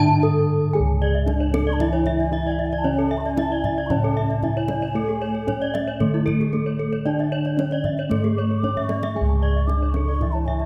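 Balinese gamelan in C# pelog at 114 BPM, hypnotic and brilliant, cut from a longer piece: bronze metallophones played with wooden mallets carry the melody and a lower accompaniment, while two bright, horn-mallet metallophones spin arpeggios above with the shimmering beats of paired tuning, the second joining at 0.7 seconds. Up front, close and dry, round padded bossed gongs hold the bass, a deep, soft-handed kendang enters in the background at 1.3 seconds and plays a drum fill near 8.6 seconds, and a distant, unsteady bansuri with vibrato and a soft attack adds an airy second line from 1.7 seconds. A moderate concert hall reverb surrounds the ensemble.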